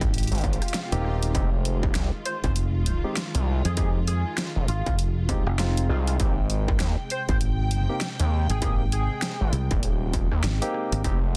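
A gritty, funky glitch hop excerpt at 99 BPM with a swung 16th-note feel opens on soft, bowed studio strings pumping under sidechain over Abmaj7, joined from the start by a growly fingered electric bass, a distorted electronic kick and a dubstep kit with a huge snare, rim click and bright hats. An overdriven sawtooth synth bass enters at 0.3 s, an electronic swell passes in the background, and a barky tine electric piano plays stabs through 12-bit sampler grit, tape echo and sidechain pumping as the harmony shifts to Fm7. From 2.3 s to 9.5 s an edgy, tearing sync lead carries the melody through lush chorus and tape echo, all within a dense, dry, heavily limited modern master.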